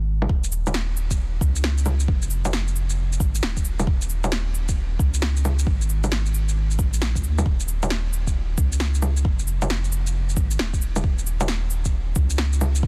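Future garage at 134 BPM with a 64% swing on the 16ths, this ghostly, melancholic excerpt is driven from the start by a round, sine-like sub bass that sits up front with tube saturation and sidechain pumping. Layered electronic bongos, shaker, cabasa and a cracking, overdriven snare enter at 0.2 seconds, softened by low-pass filtering and small room ambience, and a deep electronic kick follows at 0.3 seconds. The dense, heavily limited mix carries little reverb, keeping the sound close and dry.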